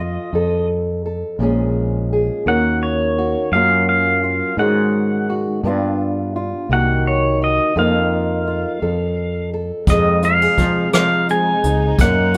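Acoustic folk-pop ballad in a slow, straight 6/8 at 57 BPM, melancholic and intimate, cut from a longer piece. A clean, compressed pedal steel guitar carries the melody up front, played with fingerpicks, slide and volume swells, while a fingerpicked old ladder-braced acoustic guitar with old strings gives a woody, boxy accompaniment. A round, punchy fretless electric bass sits close beneath them. The band plays live in one room with a wet reverb, moving through chords from F and Bbm7 to Gbmaj7, G7 and Cm7b5 before settling on F7sus4 and F. At 9.9 s the harmony turns to Fm7 as a soft brush drum kit enters with a tight kick, hi-hat and rim click, and a dark studio string section adds sustained chords in the background, bowed sul tasto with light vibrato and a smooth top.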